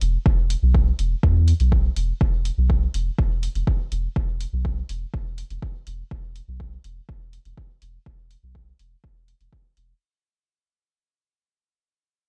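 A soft, round dub sub bass and a tape-flavored electronic hi-hat open this short cut from a longer dub techno piece, with a deep, overdriven electronic kick arriving at 0.3 seconds. The mood is cavernous and hazy, set at a straight 123 BPM in 4/4. The sub bass sits up front, mellow and sustained with a fast attack, moving between E1 and E2 and pumping against the sidechain. The layered kick is also placed up front, its overdrive and the sense of being re-recorded in a large room giving it heavy weight until it stops at 9.6 seconds. The hi-hat stays faint in the background with an analog grain. Digital ambience and dark production surround the parts, and the whole 10 seconds sits within a fade-out.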